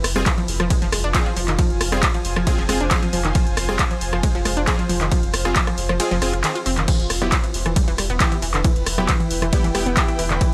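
Over a straight 4/4 pulse at 136 BPM, this dark, hypnotic excerpt of driving peak-time techno sets a punchy, up-front electronic kick (which drops out from 6.0 to 6.9 seconds) and a tape-warm analog drum machine of handclaps, hi-hat, ride, rim click and crash beside a thick, saturated sub bass with sidechain pumping, while a bright, warbling unison pluck riff with dub echo, a detuned supersaw stab in the background and a cloudy, evolving granular pad drift over a dry mix that moves from F minor to E minor at 6.9 seconds.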